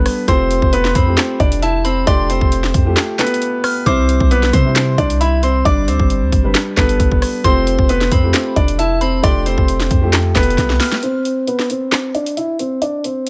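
Trap-flavoured hip hop with a dreamy, wistful half-time feel, this dry excerpt pairs a mellow, intimate felt-muted upright piano melody, filtered and echoed, with dark, boxy concert grand chords, a gentle FM synth bell line shimmering with chorus, phaser and delay, a deep, boomy 808-style bass, and an up-front trap kit of hard-clipped kicks, sharp snares, metallic hi-hats, handclaps and rim clicks, with a drum fill at 10.6 s leading into a filter-swept break from 11.0 s.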